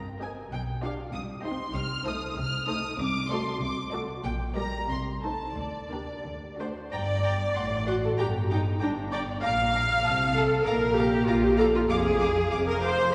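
Close and up front, the viola section carries a smooth, even accompaniment through this stormy, restless excerpt from a quick classical-period movement for string orchestra in G minor, at 96 BPM in 2/4 with a rubato feel. Two distant violin sections sing the melody and a second line above. A focused cello section and a lush, soft-attacked double bass section anchor the bass, with every section bowing with vibrato as the music moves into a new section at 6.9 s. A wet concert-hall reverb places the ensemble further back in the room.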